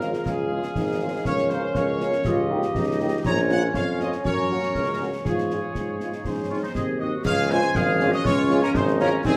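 A clear trumpet section carries the melody of this proud, festive military-style march for wind band, moving at 120 BPM in a straight 2/4 and settling into Db major, with a warm woodwind section on a second line, a dark, very quiet French horn section in accompaniment, close-miked trombones holding sustained chords and a clear, vintage-toned tuba anchoring the bass. Concert snare, bass drum and clash cymbals with dark cymbal colour drive the band throughout, while a hollow wooden piccolo joins in the background at 6.5 seconds and a mellow euphonium adds a second line from 7.8 seconds. A large studio reverb gives the trumpets, woodwinds and horns a distant, roomy sound in this short cut from a longer piece.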